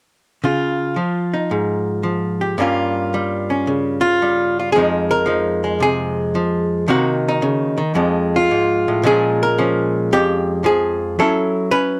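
Moody and cool, this short excerpt of solo jazz in F minor moves at 112 BPM in 4/4 with a swung, rubato feel. A lone archtop guitar, miked and amplified, carries everything from 0.4 to 12.0 seconds, its clean, dark, picked tone sitting compressed and up front between F2 and B4, with chords drifting from Dbadd9 through Gm7b5 and Fm7 to an altered F7#9 and a closing Gbm7. The sound is a dry, close 1970s-style studio capture touched with light reverb, tuned slightly sharp at A4 = 441 Hz.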